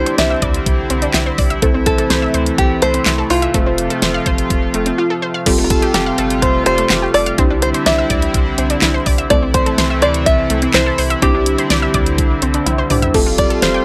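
A twangy, plunky open-back banjo carries the melody in this bright, nostalgic synth-pop passage, its acoustic, percussive tone set against a glossy electronic backdrop at a steady, straight-feeling pace. Up front, a layered, produced pop drum kit drives the groove with a knocking kick, a fat, tape-tinged snare, hi-hat, handclaps, crash and toms, rounding off with a short fill at 12.7 seconds. Beneath it, a round, deep analog bass anchors the low end, while muted, intimate synth keys with a soft, chorused touch fill in the accompaniment. A shimmering, retro pulse-width pad holds sustained chords, and a detuned analog pluck, coloured by chorus, phaser and digital delay, spins arpeggios through the mid and upper range. The harmony moves between Cadd9, Am/C and Fadd9 under light reverb, in a passage cut from a longer piece.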